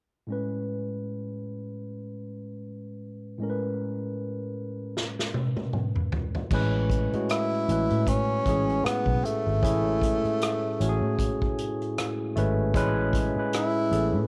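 Warm and relaxed, this 77 BPM neo-soul R&B excerpt in A major, cut from a longer piece, sways on a swung 16th-note feel. A bright, barky tine electric piano played through a combo amp opens alone on an Amaj9 chord, and a distant, roomy acoustic kit played with bundle sticks, with dark cymbals and a punchy kick, enters with a drum fill at 5.0 seconds. A round, foam-muted electric bass arrives at 6.5 seconds, and a close-miked, mellow tenor saxophone takes a jazz-style solo from 7.3 seconds with light vibrato, scooped notes and a soft attack, while the piano, drums and sax carry a cassette-tape tint in a lightly reverberant home recording.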